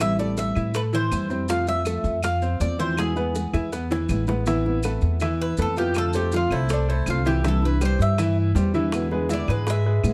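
Sultry and warm, this Cuban son and guajira excerpt moves at 161 BPM in a straight 4/4, rooted in A minor, with a light reverb over a dark production. A brilliant, up-front concert grand piano plays arpeggios with deep bass, while a thumb-plucked nylon-string guitar supplies classical-toned accompaniment and a thumpy, woody pizzicato upright bass sits prominently underneath. The picked Cuban tres carries the melody with a metallic shimmer from its double strings, some of them octave-doubled. Tight, high-tuned bongos played with hard hands stay very quiet and close, and saturated claves and grainy, mellow maracas sit in the background. After a drum fill from 3.5 to 4.5 seconds, the tres takes a solo from 4.5 seconds to the end as the harmony moves through Amadd9, F6, Cadd9 and E7.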